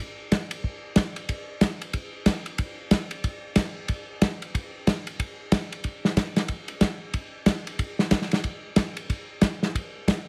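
A heavily compressed, radio-like sound sits in a moderate studio reverb on this soulful, swinging jazz fragment, cut from a longer piece. A lone acoustic soul drum kit plays from 0.3 to 10.2 seconds, up front and smooth, with dark cymbals across the hi-hat and ride, a medium-tuned snare and a punchy kick that carry a swing feel in 4/4.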